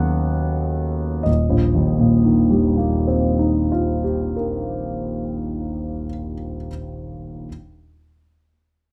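Closely miked with light reverb and audible action noise, this brief, serene and dreamy cut from a longer impressionist classical work features an intimate, up-front concert grand piano alone, its deep bass and natural tone drifting in rubato 6/8 at about 30 BPM in Eb major (tuned to A4 = 438 Hz), easing and slowing from a B9/D# chord before settling onto an Eb69 at 1.3 seconds and continuing until 7.5 seconds.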